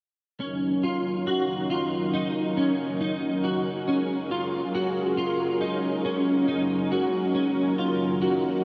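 Dream pop in Eb minor at a slow 69 BPM in straight 4/4, this brief excerpt cut from a longer piece feels melancholic and hazy. A string machine set to a cello voice holds sustained chords from 0.4 to 8.6 seconds, its vintage sawtooth tone full and mellow, with a soft attack, long release and ensemble chorus. Alongside it for the same span, a clean electric guitar plays picked arpeggios with a dark tone up front, coloured by ensemble chorus and analog delay. The harmony moves from Ebm7 to Gbadd9 and back to Ebm7. A huge ambient reverb soaks the dreamy mix, tuned slightly high at A4 = 443 Hz.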